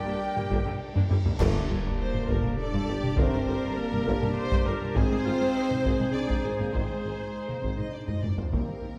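A roomy concert-hall sound frames this epic, relentless orchestral film cue in G minor, moving at 101 BPM in 3/4, with a heavy-sticked taiko ensemble driving from 0.4 seconds, mellow close-miked French horns, distant woodwinds and a punchy trombone section holding sustained chords, while a very quiet, smooth-topped violin section carries the melody over a rich second violin line and clear, lush violas. Cellos, a clear double bass section and a distant, roomy tuba anchor the bass, and a brief opening flash from an airy flute ensemble and a soft trumpet stab gives way at 1.4 seconds to a band accent of bright clash cymbals, concert bass drum and round, soft-malleted timpani. The harmony shifts from G minor to G minor add9 and then to A-flat at 5.0 seconds, with taiko fills pushing the excerpt forward.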